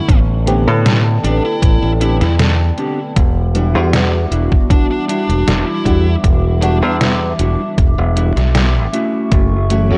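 Vaporwave with a woozy, melancholic mood in a straight 4/4 feel, this excerpt from a longer piece pairs a dark, fuzzy lead guitar melody (until 6.9 s) with a lush, dreamy FM electric piano carrying a soft pad layer, phaser and cassette-tape echo, over a nostalgic, warbling tape-like pad holding sustained chords from Am11 to Em9. A bright, direct fingered electric bass and a thumpy electronic kick sit up front alongside a detuned 8-bit drum machine with hi-hat and a fat snare, both re-recorded in a small room, while a mellow, clean electric guitar riff with lush chorus runs from 0.5 s. A clean electric guitar fill appears at 8.2 s, shortly before the harmony turns to F#m7 at 8.9 s, all under light reverb and worn, warbling old-tape pitch drift.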